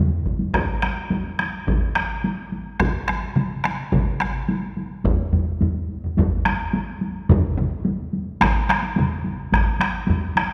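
Ceremonial and powerful, this Japanese traditional taiko drumming in straight 4/4, cut from a longer piece, sets solo taiko drums struck with heavy sticks against several up-front taiko ensemble layers: one heavy-sticked in a small room, one hard-sticked, close and dry, and a compressed, saturated one joining at 2.8 s, all under a wet concert hall reverb.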